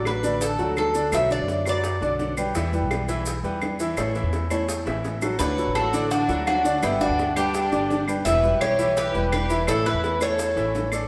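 A bright, metallic Cuban tres with picked double strings leads this short, sunny cut of Cuban son and guajira at 168 BPM in 4/4 and D major, carrying the melody up front before dropping out at 2.3 seconds. A clear, natural grand piano sits just as close, rolling arpeggios throughout. A fingerpicked flamenco guitar supplies background accompaniment, and a dark, thumpy pizzicato upright bass on gut strings anchors the low end. Tight, high-tuned bongos struck with hard hands and woody claves stay in the background, while grainy, close and dry maracas add texture, and a drum fill at 4.9 seconds leads into the second pass. At 5.4 seconds the tres returns alongside a smooth chamber violin section with vibrato, playing a second line in the background. The chords move from D through Bm, Em and A, then Dadd9, G, Em and A, with the band heard playing live together in one room under a wet, large studio reverb.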